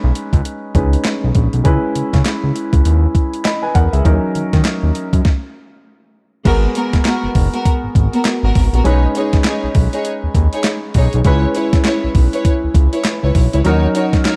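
A swung 4/4 groove at 100 BPM drives this bouncy, punchy slice of new jack swing R&B in G# minor, with a crisp 8-bit drum machine laying down a thumpy kick, a medium-tuned snare, handclaps, hi-hat and crash cymbal from 0.2 seconds, its sampler-style hits sitting up front with a tape-warm edge. Underneath, a smooth synth bass blends sawtooth and square tones into a saturated, evolving sound with a fast attack, long sustained notes and vibrato, placed just as far forward as the drums. A grand piano supplies polished, present accompaniment with long sustain, moving through B6/9, C#m7 and D#m7 chords. Everything halts in a stop between 5.3 and 6.5 seconds, and then a lush studio string section enters with bowed ensemble stabs over a G#m9 chord, their smooth top and vibrato trailed by a delay. The dark, warm production carries little reverb in this short section taken from a longer piece.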